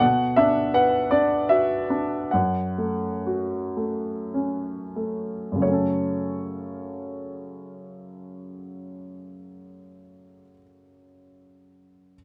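The recording has a dark production with light reverb, and a clear grand piano sits present and up front. This is a lyrical classical solo for piano in F# minor, tuned slightly high at A4 = 441 Hz, with a dark, melancholic mood. It moves in 3/4 with a free, rubato feel, and the tempo drifts between 43 and 83 BPM, slowing down over the opening 5.6 seconds. The harmony opens on B minor and settles onto F# minor at 2.3 seconds. The piano's range runs from F#2 to F#5 and it plays throughout, with a new passage arriving at 5.6 seconds in this brief passage cut from a longer piece.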